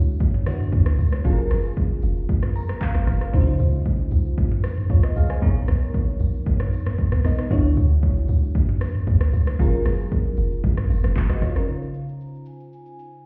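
The recording sounds muffled, as if heard through a wall, with a touch of stone-room reverb, in this short, soulful and warm cut from a longer amapiano track in a straight four-beat groove. A deep house drum kit sits up front, carrying a punchy kick, smooth hats, handclaps, rim clicks, shaker and toms, with an electronic, layered character and the air of a small room. Beside it, the deep log drum bass is round, dark and percussive, each note striking fast and decaying away. Beneath them, a bell-like FM electric piano sparkles through chorus, phaser and a low-pass filter, voicing lush major-ninth chords and slipping in a brief fill around 2.3 seconds. The opening runs as a drop until 11.7 seconds, when the log drum bass falls away, a filter sweep begins, and a faint concert flute enters with a pure, straight tone and crisp attack, softened by a low-pass filter and trailed by analog delay.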